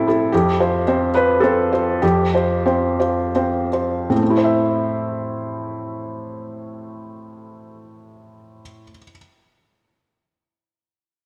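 A felt-muted upright piano opens this fragile, reflective classical fragment in A minor, sitting up front with an intimate, mellow tone and the soft touch of thin felt, playing accompaniment between F2 and E5. In a rubato 3/4 that drifts between 77 and 114 BPM, the first section slows down across its opening 4.1 seconds, with an Fsus2 chord arriving at 0.3 seconds, before settling onto A minor at 4.1 seconds. A wet plate reverb with a long 2.5-second tail surrounds the piano, and the passage breaks off at 9.2 seconds as though cut from a longer piece.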